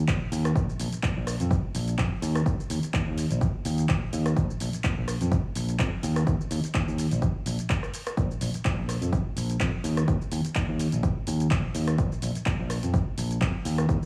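Filtered disco house at 126 BPM in 4/4, with a light swing on the sixteenths, this short excerpt cut from a longer piece feels funky and feel-good from start to finish. A fingered electric bass sits up front, sounding direct and amped as it moves between Bb1 and F2, its tone pumping under sidechain compression. An electronic kick drum drives the groove with an analog, punchy, tape-warm thump, placed forward in the mix and re-recorded in a small room. Around it, a punchy analog drum machine supplies handclaps, hi-hat, rim click and shaker, set lower in the balance, with sidechain pumping on the hats and percussion. The bass opens the excerpt, with the kick and drum machine joining at about 0.1 seconds, and all three parts run together to the close at roughly 14 seconds, held in a dry, compact room sound with only a touch of reverb.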